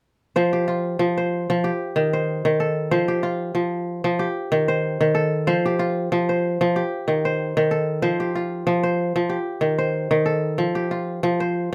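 Warm and joyful, this short excerpt of West African traditional music moves at 94 BPM in F mixolydian with a gentle sixteenth-note swing. A solo kora plays fingerpicked arpeggios from 0.4 to 11.7 seconds, its ringing, crisp acoustic tone sitting up front and alternating between F5 and Eb chords. Close, detailed miking with light reverb captures every plucked string.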